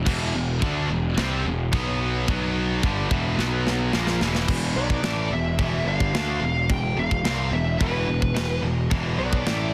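A straight 4/4 pulse at 109 BPM in E minor opens this epic, relentless heavy metal fragment in half time, where a tight, mid-forward acoustic kit of kick, medium-tuned snare, china and crash cymbals (its kick softly clipped) joins a growly, overdriven fuzz bass up front and a bed of bright, picked distorted riff guitars. One heavy high-gain part in the background drops out at 4.5 seconds after a drum fill, while a tight distorted one in the background and a very quiet double-tracked one carry on. A dark high-gain lead guitar melody enters at 4.8 seconds, all within a small room and a dense, heavily limited modern master.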